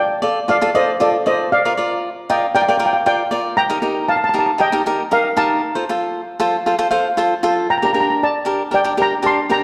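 A mellow steel pan and a crisp, picked cavaquinho start together, opening a bouncy, festive calypso cut from a longer piece. The lead pan carries the melody with soft rubber sticks, giving a shimmering, metallic yet smooth tone that sits up front. The acoustic cavaquinho supplies warm, up-front accompaniment alongside it and steps forward with a short fill from 6.7 to 7.7 seconds. The harmony moves from Dm through Bb, Ebadd9 and F before landing on Gmadd9. A generous scoring-stage reverb surrounds the parts, and the overall production leans dark and warm.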